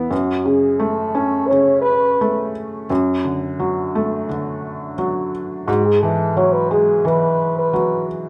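Captured live in one room with a moderate large-studio reverb, this short cut from a longer melancholic, heartbroken acoustic folk-pop ballad at 86 BPM in F# minor pairs an intimate, felt-muted upright piano, mellow and up front with audible action noise, with a distant, roomy French horn in classical style that carries the solo line from 0.1 seconds over chords moving from F#m to D/F# and Eadd9/G#.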